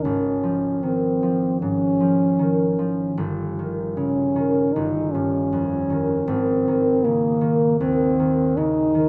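In a flexible rubato 4/4, this lyrical, serene romantic classical fragment for duo sets a mellow, up-front French horn melody with light vibrato and a smooth top over a ringing, fingerpicked concert harp accompaniment moving from Db/Ab through Eb7/G to Ab, both playing throughout the 9.1 seconds within a moderate scoring-stage reverb.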